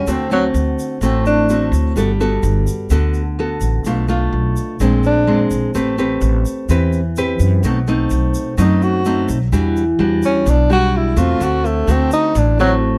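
Intimate and smooth, this fragment of a bossa nova moves at 127 BPM in a straight 4/4, tuned to A4 = 444 Hz, with a breathy tenor saxophone soloing in mellow, subtoned phrases full of vibrato and scooped notes, its longest line running from 8.6 to 12.7 seconds. Up front beside it, a fingerpicked nylon-string guitar comps through chords such as Gmaj9, Am9 and Em9, with an audible finger squeak, while a woody, growly pizzicato upright bass anchors the low end. A quiet, grainy egg shaker sits in a small room behind them, and light reverb softens the whole.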